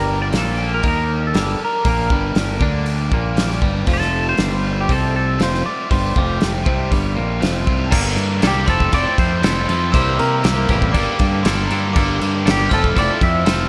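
Indie rock at 119 BPM in G dorian, this short cut from a longer piece feels bittersweet and restless, moving in a straight 4/4 over a hall reverb that gives it a big arena sound. A bright, compressed twangy electric guitar carries the melody with phaser and slapback echo, while a second, mellower twangy guitar and a raw, overdriven garage guitar play riffs beneath it, the garage part colored by subtle chorus and digital delay. A growly fuzz bass sits up front with overdrive, and a loose acoustic drum kit, with dark cymbals, a tight kick and a rolled-off top, enters at 0.3 seconds. The harmony moves from Gm to Fadd9, then shifts at 7.9 seconds into a busier turn through Gmadd9, Fmaj7 and C7. At that point a glockenspiel with hard plastic mallets joins in the background, its dark, bell-like ringing line carrying slapback echo and digital delay.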